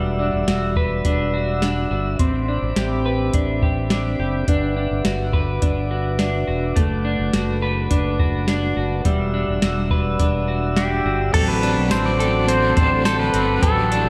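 Dream pop at 105 BPM in a melancholic, ethereal mood, cut from a longer piece, where a mellow, flute-like tonewheel organ with key click and slow rotary speaker holds sustained chords. A clean, picked electric guitar plays up-front arpeggios through analog chorus, delay and slapback echo, over a punchy fretless bass with ensemble chorus and a soft vintage rhythm box with deep kick, crisp snare, metallic hats, tambourine, crash and overdrive. At 10.8 seconds a twangy, compressed pedal steel guitar enters with a slide melody and volume swells, joined at 11.3 seconds by a crunchy overdriven guitar in the background with tremolo and lush chorus, all set in a wet concert hall reverb with a big arena sound.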